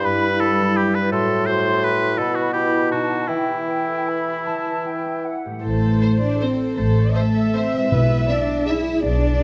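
Sweeping and dark, this orchestral ballroom waltz in 3/4 moves with a rubato feel at 145-183 BPM, starting in E minor and turning to A minor. Woodwinds open the piece. A clear oboe sits up front, a pure-toned flute group and a warm clarinet sit further back, and a bassoon supports beneath, while a ringing, fingerpicked concert harp plays arpeggios throughout. At 5.6 s the chamber strings take over, with violins on a second line, dark violas in accompaniment, and smooth-topped cellos and double basses carrying the bass up front, all bowed sul tasto with an intimate feel. A floating, distant studio violin section with a soft attack carries the melody in the background, and timpani struck with medium mallets add a brief accent at 7.9 s. Close, detailed microphones sit within a moderate concert hall reverb, and the passage is cut from a longer piece.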